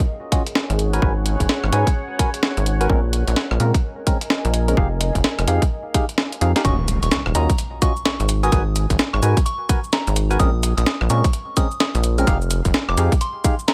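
Skippy and soulful, this two-step UK garage excerpt in Eb minor moves at 128 BPM with a 62% swing on the 16th notes, as a tight, layered electronic kick and a gritty, pitched-up sampler-style breakbeat kit of hi-hat, rim click, shaker and snare sit up front beside a rubbery, bouncy square bass. A nasal, organ-like stab carries a filter sweep with chorus and tape echo over a deep, moody ambient pad that pumps against the kick through the first 6.6 seconds, cycling minor-ninth chords from Ebm9 through Abm9, Bbm9 and Fm9. After the kick drops out for a drum fill, the drop lands at 6.6 seconds with a background electronic impact, and a soft, warbling FM bell takes the melody with chorus and tape echo as the pad falls away.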